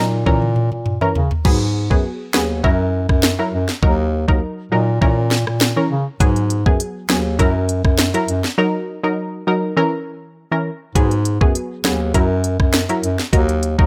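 Dancehall at 101 BPM in G# minor, hypnotic and sultry, where a punchy, detuned sawtooth chord stab with chorus and a filter sweep and a mellow, classical-style bass clarinet playing solo sit up front from the start over a cycling A#dim, G#m7, F#7 and D#m progression, joined at 0.3 seconds by an electronic island pop drum kit whose fill opens onto a knocking kick, sharp snare and smooth hats, with a break at 8.6 seconds before the final section arrives at 11.0 seconds in this dry fragment of a longer piece.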